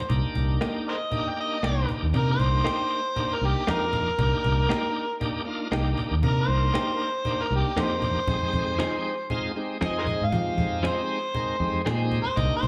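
Soulful and mournful, this short excerpt of straight-eighth soul blues in C minor at 117 BPM features a gritty, overdriven harmonica soloing up front with light vibrato, tongue slaps and slapback echo over a Cm7 that moves to Fm7 at 8.3 seconds, backed by a bright, shouting tonewheel organ with key click and slow rotary speaker, woody cajon with faint snares, a fingered electric bass entering at 0.1 seconds, and clean, compressed electric guitar stabs with subtle chorus and slapback echo coming in at 0.6 seconds, all set in a small room ambience.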